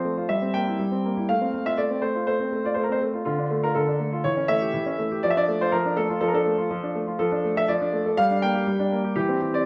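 A solo concert grand piano opens this short cut from a longer classical-period sonatina, its tone clear and open with a deep bass and a sound placed up front. The mood is playful and cheerful, moving at 122 BPM in 4/4 with a flexible rubato feel. Ranging from D3 to G5, the piano moves from C7/G and F/A into a darker turn through Dm, A7/E and Dm/F before arriving on Gm at 8.2 seconds. A wet recital hall reverb surrounds the instrument, giving each phrase a lingering tail. The piece stays a single unbroken passage of piano alone through its 9.7 seconds.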